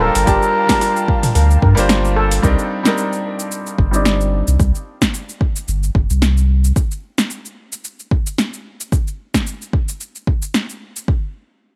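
This smooth sunset chillout piece opens on a Gm9 chord, with a bucket-muted trumpet playing a brief, veiled and raspy jazz-style melody through digital delay. Beneath it sit a bright grand piano, a round sine sub bass up front, a shimmering steel pan playing arpeggios through tape echo in the background, and an ethereal, detuned pad holding sustained chords behind them all. The groove runs at 111 BPM in 4/4 with a swung 16th-note feel in C dorian. Just after the start an overdriven deep house kit with punchy snare, cabasa, hi-hat and toms comes in, followed a moment later by a deep electronic kick, both placed up front. At 2.4 seconds the harmony moves to Cm9 and a filter sweep passes over the piano, while the pad and steel pan stop there. The sub bass holds until 6.7 seconds, after which the drums play alone until the excerpt ends, set in a digital ambience.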